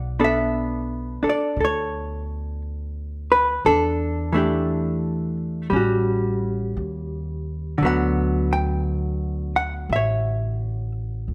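A dark, clean hollow-body electric jazz guitar sits up front, playing picked, compressed accompaniment through Bm9, Em7, A6 and Dmaj13, while a thumpy, woody pizzicato upright bass with steel strings plays beneath it in this intimate, wistful jazz ballad in B minor, which moves at a slow 58 BPM in 4/4 with swung eighths in a light reverb, cut from a longer piece.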